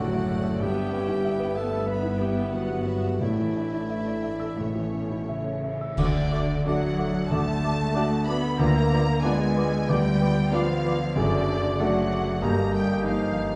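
An excerpt from a passionate, lyrical romantic movement in D major, rubato at 84-97 BPM, opens with a warm, up-front concert grand piano sharing the melody with a clear, distant violin section over a rich chamber violin line, clarinet, background violas, mellow French horns, cellos and double basses, as a dark cymbal swell, clash cymbals, bass drum and very quiet soft-mallet timpani arrive at 3.2 s, and at 6.0 s the band accents a new section where cor anglais, a pure-toned flute group and a dark bassoon join, all in a wet recital hall.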